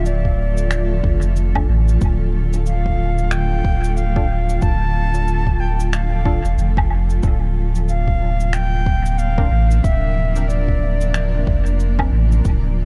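A dry mix with a round, up-front sub bass carrying tube saturation sets the tone for this hazy, meditative ambient dub fragment in D minor at 92 BPM, swung on the sixteenths and moving from Dm to Bbadd9/D around 7.2 seconds. An airy, reedy concert flute with vibrato sings the melody through dub echo until 11.8 seconds, over a blurred, evolving granular pad with built-in reverb and 12-bit sampler grit. A deep, tape-toned electronic kick anchors a dark, rolled-off kit of cabasa, finger snaps and woodblock sent into echo, while a muted, detuned sawtooth chord stab with lush chorus and dub echo enters at 1.6 seconds and sits in the background.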